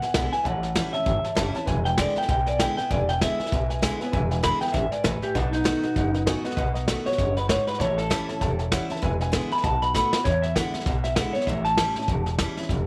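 Rockabilly at a brisk 196 BPM in 4/4 with a swung eighth-note feel, this retro, rowdy excerpt sits in E major and moves through A7, E7 and B7 changes. A twangy, slightly broken-up electric guitar through a small old amp carries the melody with tape echo, taking a clean solo from the start until 10.3 seconds. Beneath it, a bright, full-bodied steel-string acoustic guitar and a dark, slightly detuned upright piano with audible action noise supply accompaniment, the piano dropping out at 10.2 seconds. A thumpy, woody pizzicato upright bass anchors the low end, while an up-front vintage brush kit with a tight kick and rolled-off top plays a drum fill from 9.9 to 10.3 seconds leading into a new section. A small room reverb surrounds the whole band.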